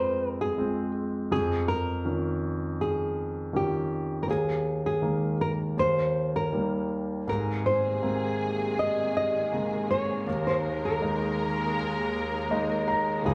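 A straight 4/4 pulse at 80 BPM carries this heartfelt, tender pop ballad excerpt, where a dark nylon-string guitar with fresh strings sings the melody up front over an intimate concert grand piano whose deep bass, long sustain and audible action noise shape the accompaniment through chords moving from Fm to Ebsus4. At 7.3 s a lush, woody string section enters with bowed, vibrato-rich sustained chords, and the piano adds a polished fill at 12.1 s. The band plays live in one room, bathed in a wet, large studio reverb.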